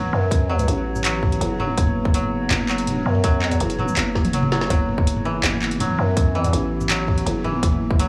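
A small, lightly reverberant room frames this heavy, dark half-time drum and bass excerpt at 164 BPM in F# minor, where a growling, buzzy 808-style bass sits up front beneath koto arpeggios plucked with fingerpicks, woody and dry in tone yet trailed by dub echo. A metallic, inharmonic FM drone hangs eerily in the background with chorus and its own reverb, sustaining a B3 over an F#madd11 chord. From 0.3 seconds a tight, layered electronic kick and a kit of woody snare, metallic hats, handclaps, shaker and toms push forward, with a drum fill at 4.2 seconds.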